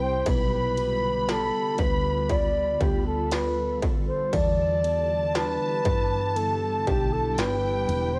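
A breathy flugelhorn carries the melody from the opening moment of this hopeful, heartfelt pop ballad excerpt, its dark, whispered tone sitting up front with light vibrato, soft attacks and scooped notes in an intimate jazz style. Around it, a lush studio violin section holds a smooth, even second line high above, touched with tape echo, while a bell-like tine electric piano adds bright, clean accompaniment through analog chorus from the background. An ethereal, airy pad sustains mellow chords with a slow attack and long release, thickened by ensemble chorus and its own reverb. A woody fretless electric bass, round and punchy with subtle chorus, anchors the low end, and an industrial drum kit enters at 0.3 seconds with a distorted kick, clanging snare and ride cymbal placed prominently in the mix. At a slow 59 BPM in a straight 4/4, the harmony moves from G7/B to Em7 at 4.3 seconds, and the whole home cassette recording carries a light reverb and a cassette tape character.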